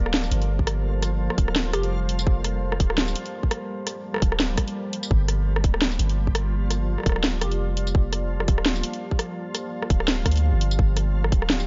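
This cinematic, tense half-time drum and bass excerpt in G minor opens on a deep, moody pad holding a Gmadd9 chord, its detuned sawtooth layers thickened with chorus and reverb and pumping against the sidechain, while a long, dark 808-style sine bass sits up front and a reversed, dreamy granular texture swells alongside them. Drums enter at 0.1 s with a cracking snare, hi-hat, rim click and tambourine, and a tight, layered electronic kick joins at 0.6 s, driving a 169 BPM groove with a lightly swung half-time sixteenth feel. A glassy, crystalline wavetable pluck flickers briefly on G4 around 1.7 s and again near 7.4 s, sitting in the background with cassette-tape colour and dub echo trailing behind it. A short break falls between 4.8 and 5.1 s before the groove carries on. The overall sound is dry and close, with the top end rolled off for a dim, heavy atmosphere.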